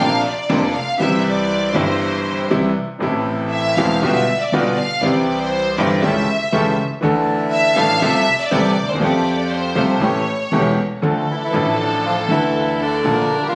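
In a rubato 4/4 feel, this sultry, dramatic tango fragment features a smooth, bowed symphonic violin section with light vibrato taking a solo turn through 11.0 seconds, over a clear, short-sustained vintage grand piano accompaniment, reedy bandoneon stabs, and a woody, thumpy pizzicato upright bass, before a dark, close-miked bandoneon melody with tape echo enters at 11.3 seconds, all captured on a phone in the room with moderate studio reverb and compression.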